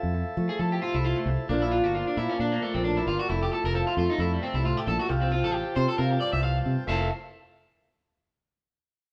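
A joyful, carefree highlife passage opens with a dark, boxy fingerpicked acoustic guitar in a swing style, mellow vintage combo-organ chords, a round, up-front fingered electric bass and a clean electric guitar solo that runs until 6.9 s, while a slightly broken-up, picked electric guitar enters at 0.5 s with arpeggios over a Fmaj7, Bb and Csus4 progression, the band playing live together in a moderate stone room.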